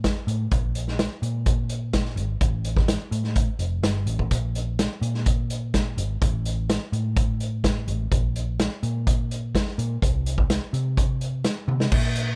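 A vintage acoustic drum kit plays through this short folk rock and heartland rock cut at 126 BPM in a straight 4/4, its punchy kick, medium-tuned snare, hi-hat, toms and dark crash cymbal sitting up front in a small, pumping room with a rolled-off top, and a drum fill arriving at 11.7 seconds. A hollow-body short-scale electric bass, picked and amped with a round tone, plays alongside from the start, also up front. The mood is jangly and warm, with little reverb on the dry sound.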